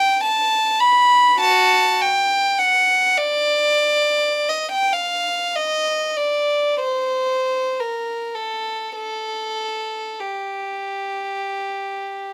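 A rich, pure solo violin, bowed sul tasto by one player with a soft attack, floats up front through this yearning, meditative classical fragment, an unaccompanied rubato passage in free, expressive time, spanning F#4 to B5 over 12.3 seconds in light reverb and tuned to A4 = 439 Hz.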